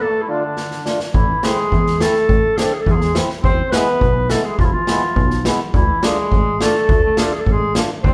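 A soulful, festive klezmer excerpt at 104 BPM in D dorian sharp4 opens with a break as the up-front, roomy clarinet sings the melody over a buzzy, metal-muted trombone second line and a reedy, boxy accordion, before a boomy street-band drum fill at 0.6 s and a punchy, ring-modulated analog bass from 1.1 s carry the band, playing live in one large reverberant room, through Am, E and back to Dm.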